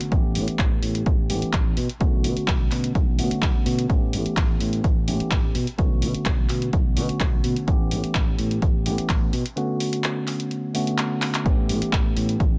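A steady, straight 4/4 groove at 127 BPM drives this sunny, joyful filtered disco house passage in A mixolydian, anchored by an up-front, punchy electronic kick, a small-room analog drum machine supplying handclaps and sidechain-pumped hi-hats, and a barely audible tube shaker. A warm fingered electric bass and a bright, bell-like tine electric piano, up front with phaser, both pump and pass through a low-pass filter as they cycle between A9 and Bm9 chords. A filter sweep runs throughout this excerpt, with a break from 9.6 to 11.5 seconds and a drum fill at 11.2 seconds, all set in a digital ambience.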